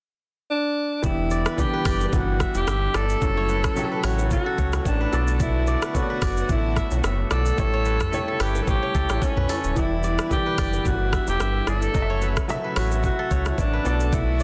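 Afrobeats at 110 BPM with a lightly swung sixteenth feel, mellow and smooth, cut from a longer piece over Em7, F#m7, Bm7 and A7 chords. A mellow, roomy alto saxophone with vibrato carries the melody through tape echo from 0.5 seconds, and from 1.0 seconds it is joined by a worn baby grand piano with long sustain, a deep, up-front sine sub bass with octave, an electronic drum kit with a knocking kick, dark hats and a soft-clipped snare, very quiet hand-played congas and bongos, and a lush, detuned unison pad with chorus and sidechain pumping in the background. From 1.3 seconds a crisp, ringing fingerpicked kora adds a riff through tape echo, all set in small room ambience with a dense, heavily limited modern master.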